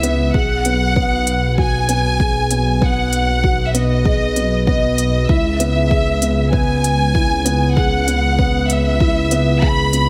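Piano and strings electronica at 97 BPM in C# minor, this cinematic, hypnotic excerpt sets a close, smooth violin section carrying the melody with vibrato over a soft, felt-muted upright piano riff with audible action noise and digital delay, while a dark, rumbling detuned saw bass pumps under sidechain, smooth electronic hi-hats tick throughout, and a deep, layered electronic kick enters at 0.3 s as the harmony moves from G#m7/B to C#m7 at 5.3 s in a light studio reverb.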